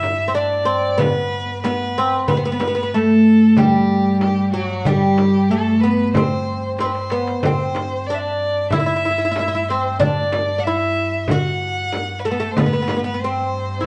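Turkish makam ensemble music in G makam rast, passionate and festive at 93 BPM in a straight 4/4, with a woody, fretless oud plucked up front carrying the melody over a rich, vibrato-laden bowed violin second line touched by slapback echo, a clear, distant cello drone on G2, a crisp metal-shell darbuka sitting in the background alongside a small, bright, saturated frame drum that stops at 13.0 seconds, a drum fill from 6.8 to 7.4 seconds, and the group heard live in a moderate stone room, cut from a longer piece.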